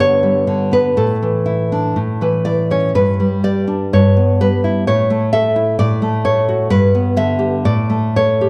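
Nostalgic and sunny, this romantic solo classical guitar excerpt drifts at a rubato 56-67 BPM in 2/4, its up-front, full-bodied nylon-string guitar, fingerpicked across a G2 to E5 range, moving through G, Asus4, A, Em/G and F#m/A chords over 8.5 seconds while a recital hall reverb with a 1.4 s decay wraps the dark, warm production.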